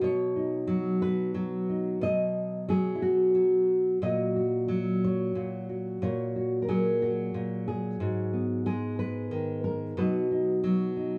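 A nylon-string guitar sits up front in this short solo folk extract, its fresh strings and thumb-plucked classical touch giving a warm, hopeful and peaceful character. The fingerstyle playing moves at an unhurried 60 BPM in a straight 6/8, in B major tuned to A4 = 442 Hz, passing through B, F#/A#, G#m7 and back to B by 10.0 seconds. A dark production and moderate studio reverb lend the 11.2-second passage a gentle sense of space.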